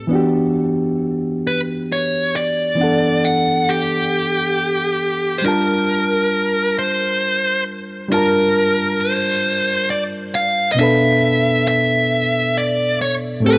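A slow, straight-feel 6/8 pulse at 45 BPM in dotted quarters carries this yearning, sultry R&B fragment in B phrygian. A reedy, lightly overdriven electric piano, heard through its built-in speakers and placed up front, comps from the start over Em9 and Gm9 before moving to Bm7 at 10.8 s. At 1.5 s a dark, picked electric lead guitar enters with the melody, its overdriven tone trailed by analog delay and set in a moderate echo-chamber reverb with a 2.7 s decay.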